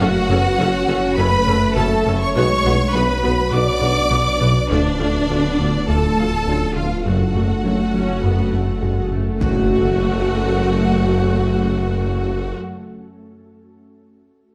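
Heard through a wet recital-hall reverb with lossy compression artefacts, this brooding, relentless cut from a hybrid orchestral and electronic film score moves at 102 BPM in F# harmonic minor over F#m, Bm and Dm, with lush bowed violins carrying a vibrato melody and a soft-attack second line in the background, rich violas, close, focused cellos, smooth double basses, distant dark French horns, a roomy tuba, an ethereal airy pad and a mellow harp-like synth pluck with chorus and phaser, set over a menacing detuned saw bass and a round analog bass riff until the pluck and riff stop at 9.3 s and a huge, bright impact lands at 9.4 s.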